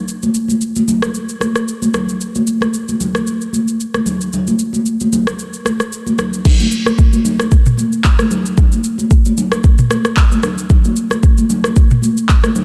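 A soulful, hypnotic amapiano groove with a gentle sixteenth-note swing opens at 0.1 seconds on an electronic afro-pop drum kit, with a deep kick, handclaps, rim clicks, shaker, toms and crash cymbal roughened by vintage 12-bit sampler grit, joined almost at once by bright, high-tuned congas played with soft hands, pausing for a break at 5.4 seconds before moving into a new section at 6.5 seconds, all in a dry, dense, heavily limited modern mix that feels cut from a longer piece.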